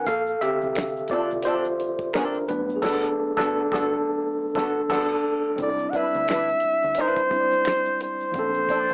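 This short excerpt sounds like a home cassette recording heard over AM radio, set in a small booth with a brief, dry ambience. It is a sensual, relaxed neo-soul and R&B groove at 87 BPM in 4/4, with a gentle swing on the sixteenths. A worn, slightly out-of-tune tine electric piano sits up front, lightly overdriven as if through built-in speakers, and takes a featured turn through the first 5.6 seconds over Bbmaj9 and Gmaj9 chords, with a band accent from 2.8 s. Beneath it, a deep, round, foam-muted fingered bass stays in the background, while a cloth-damped acoustic kit gives a thuddy feel with a fat snare, tight kick, dark cymbals, finger snaps and a rolled-off top; a tube shaker and group handclap add soft texture from a small room. A dark, clean hollow-body jazz guitar with wah and compression joins at 0.8 s as a second line. At 5.6 s the harmony moves to Cmaj9 and then returns to Bbmaj9, as a warm, punchy flugelhorn steps forward with vibrato and scooped, pop-style notes to carry the melody.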